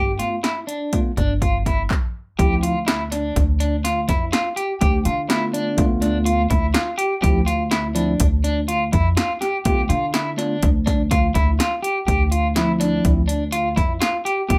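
Driving and intricate in a straight 5/4 at 124 BPM, this progressive instrumental cut pairs an up-front, punchy analog drum machine with overdriven kick, snare, handclaps and hi-hat with a woody, growly pizzicato upright bass, while a slightly broken-up electric guitar picks arpeggios through harmonic tremolo over a clean tine electric piano heard through its built-in speakers, all in a small room, with a stop from 1.9 to 2.4 seconds before the chords alternate between Dm7 and G7/D.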